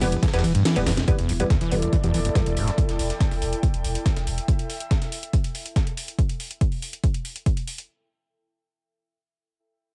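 A punchy, up-front electronic kick drives this relentless, intense peak-time techno excerpt, dropping out from 0.7 to 1.1 s, alongside a squelchy, gritty, saturated acid bass riff with tape echo, crisp, detuned wavetable chord stabs, a round sine sub bass, a very quiet, moody ambient pad drone, a layered techno kit with cracking snare and metallic hats, a compressed breakbeat sampler-style kit sitting in the background, and an airy, breathy chorused pad entering at 1.1 s, the mix dry and pumping with sidechain, most parts carrying a cassette tape colour.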